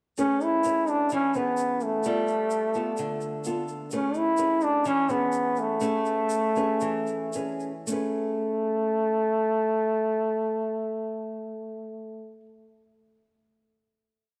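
Bossa nova in A major at 109-129 BPM, romantic and sunny, where a clear, up-front jazz trombone with light vibrato sings hook-like motifs over warm, thumb-plucked nylon-string guitar chords moving between Amaj9 and G9, a grainy, close tube shaker drops out at 8.0 seconds just after the tempo slows into a long final chord, all bathed in a wet plate reverb.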